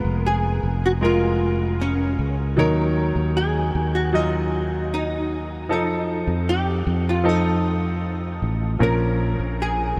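A dark, clean archtop guitar carries the melody from the first moment, its picked hollow-body tone sitting up front and shimmering with an ensemble chorus. Alongside it, a brilliant concert grand piano plays the accompaniment with a polished, present sound, deep bass and short sustain. Underneath, a fretless electric bass sustains with a growly, direct and amped character, thickened by a lush chorus. This slow pop excerpt feels emotional and heartbroken, moving through Fdim, Ebm7 and F7 before settling on Bbm at 8.8 seconds. A huge ambient reverb soaks the mix in a dreamy haze over the full ten seconds, a fragment cut from a longer piece.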